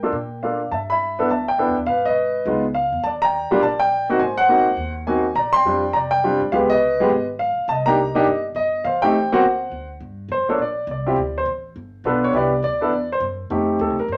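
Jazz piano trio in G minor at a brisk 206 BPM, swung in 4/4 with a smoky, late-night mood, cut from a longer piece and tuned slightly sharp to A4 = 443 Hz. An up-front concert grand piano with a warm, deep-bottomed natural tone carries the melody over chords such as Gm7, Ebmaj7, C#7#11 and D7, while a woody, thumpy pizzicato upright bass on gut strings sits much lower in the mix. The pair share a studio room with short, wet reverb, and from 10.0 seconds the piano takes a solo over a fresh run of changes through G7, Cmaj7 and F7.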